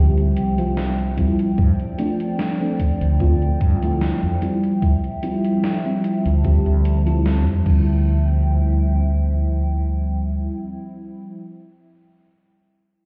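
This hazy, melancholic vaporwave fragment sounds as though it is heard muffled through a wall, set in a stone room with light digital ambience. An FM electric piano with a soft pad layer carries the accompaniment up front, its lush, detuned, dark tone treated with tremolo, analog chorus and tape echo. Behind it, a warbling, lo-fi tape-like pad holds sustained chords with a slow attack, chorus and its own built-in reverb, adding a nostalgic vintage haze. A punchy fretless electric bass sits up front in the low register, while a gated 80s digital drum machine supplies crash, hi-hat and a gated-reverb snare, joined at 1.2 seconds by a thumpy electronic kick. The drums drop away at 7.8 seconds, leaving the piano, pad and bass to drift from their opening Dm11 colour into the closing section from 8.1 seconds, as the passage cuts off mid-piece.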